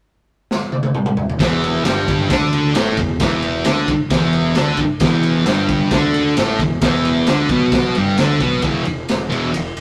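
A raw garage drum kit opens with a fill at 0.5 seconds, its high-tuned snare, punchy kick and dark cymbals pumping in a small stone room, before a thick, bright, double-tracked fuzz guitar riff and a fuzzy overdriven fingered bass in the background crash in on E minor at 1.4 seconds, driving a swaggering, menacing garage rock groove at 133 BPM that lands on an E power chord at 8.6 seconds in this rough, tube-saturated rehearsal-room cut from a longer piece.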